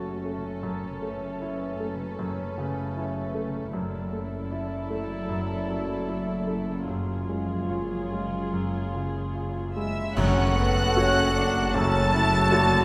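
A bright, brilliant concert grand piano sits up front in this bittersweet, longing orchestral film cue, its deep bass and short sustain anchoring a loose, rubato pulse. Above it, a violin section carries the melody with light vibrato and a sul tasto touch, while a second, rich violin section adds a soft-attack line and the violas float a pure accompaniment beneath. A fingerpicked harp rings out arpeggios in the background, and intimate cello and double bass sections hold the bass. At 9.8 seconds an airy silver flute and a mellow cor anglais add second lines. At 10.2 seconds a smooth-topped French horn section enters with sustained chords as clash cymbals and bass drum mark an accent, the percussion falling away at 11.7 seconds. A wet scoring-stage reverb places the ensemble further back in the room, and the passage is cut from a longer piece.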